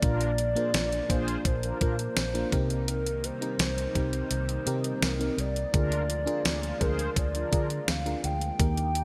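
A hollow, woody synth lead with a clarinet-like voice carries the melody through this urgent, moody 1980s-style pop excerpt at 84 BPM in a straight 4/4, its soft attack and vibrato softened further by chorus and delay. Beneath it, a mellow FM electric piano with a warbling, full-bodied tone plays the accompaniment, while a smooth analog pad holds sustained chords with a moving notch in the background. Mellow synth brass, round and detuned with a sub octave and a filter sweep, adds chorused stabs before dropping out at 7.7 seconds. A dark, foam-muted fingered electric bass sounds round and punchy, and an up-front 12-bit digital drum machine drives hi-hat, thumpy kick, fat snare and tambourine through gated reverb. The chords move from Bb to Cm7 at 2.5 seconds and on to Bb7/D, all set in a lush hall reverb with bright digital production.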